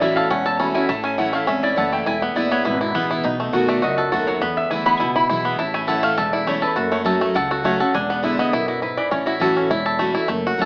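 The recording has an AM-radio sound wrapped in a moderate large-studio reverb, and it is cut from a longer, joyful and lively bluegrass piece in A major at a brisk 204 BPM in straight 4/4. A mellow, nasal lap resonator guitar, picked with fingerpicks and played with a steel bar, takes a metallic slide solo in a high register from the opening and falls silent at 9.3 s. Carrying the melody up front, the bluegrass banjo rings bright and twangy with a percussive fingerpicked attack. Also up front, a picked steel-string dreadnought acoustic guitar with fresh strings fills out the accompaniment. Underneath, a pizzicato upright bass on gut strings supplies a woody, thumpy low end, set well back in the mix. The harmony moves from A6 through A, E, B7, E, A, F#m and E7 before returning to A6.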